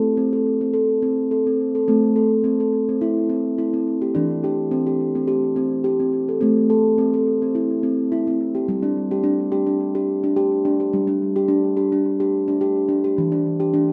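Drenched in echo-chamber reverb within a small-room ambience, this hypnotic, meditative world excerpt from a longer piece features a solo steel tongue drum played up front with rubber mallets, its round, ringing tones carried by analog delay over a lightly swung pulse as the harmony moves through A minor and E minor before shifting to a new section on G5 at 8.7 seconds.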